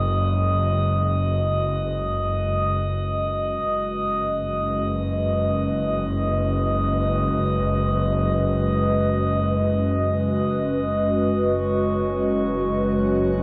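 In free time, this melancholic, reflective ambient passage, cut from a longer piece, holds a B69/F# chord in a vast, echoing space, drenched in huge reverb. A warbly, nostalgic tape-like pad with chorus fades in over sustained chords, as a bright, bowed double bass section holds a low F#1 with lush vibrato, and a glassy, ethereal glass harmonica with beating fades out above. At 12.1 seconds a calm, organ-like drone with phaser and ensemble chorus enters softly in the background.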